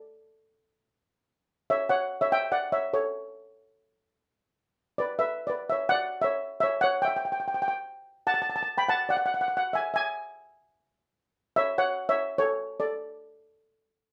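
Bouncy and carefree, this 146 BPM calypso excerpt in a straight 4/4 features a solo double seconds steel pan, played with soft rubber sticks and sitting up front between A4 and B5, whose metallic, shimmering yet mellow and airy tone drifts over chords such as A, Bmadd11, C#dim and a rootless D, captured with close, detailed microphones and light reverb.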